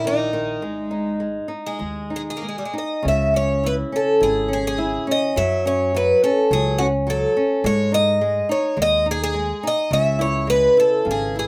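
Rubato in 4/4, this mournful, passionate fado-style ballad is cut from a longer piece, its melody carried by a bright, shimmering, octave-doubled picked twelve-string acoustic guitar sitting up front with a boxy parlour tone. Beneath it, a fingerpicked flamenco guitar adds accompaniment with audible finger squeak, while a dark, woody pizzicato upright bass anchors the low end, and a single bowed cello with a reedy gut-string tone briefly voices a second line from 0.6 to 1.5 seconds. The rough home demo mix sits in a small room with moderate reverb, and the harmony settles into its minor-key progression at 3.0 seconds.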